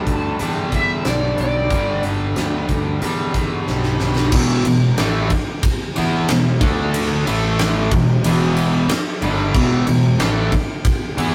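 A rough rehearsal-room recording with a wet booth ambience and a short decay opens this brooding, smoky blues rock excerpt, a power-trio piece with a southern rock streak in E minor at 92 BPM in a straight 4/4. A dark, smooth lead guitar with wah and overdrive sings a brief picked melody in its upper register and falls silent at 2.0 seconds. Beneath it, a bright, scooped, double-tracked distorted electric guitar drives the riff up front, moving from G into power chords on E, D and A before settling on E minor. A growly, fingered fuzz bass, overdriven and punchy, holds down the low end throughout. The huge arena drum kit, with its fat snare, punchy kick, bright cymbals and pumping hall sound, enters at 0.1 seconds and plays a fill from 3.7 to 4.3 seconds that launches the second section.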